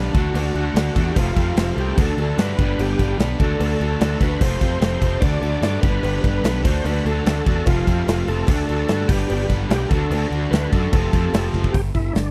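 Classic rock with a sunny, swaggering strut, this short cut from a longer piece drives through a cycling D, F and G progression as a gritty, overdriven tonewheel organ carries the melody through slow rotary swirl, a fuzzy bass sits up front beside a punchy big-room drum kit with bright cymbals, two picked electric guitars (one distorted, one overdriven with harmonic tremolo in the background) play riffs, a boxy old acoustic guitar and a metallic cowbell murmur very quietly underneath, and a drum fill at 11.5 seconds caps it all in a dry, close 1970s-style studio sound.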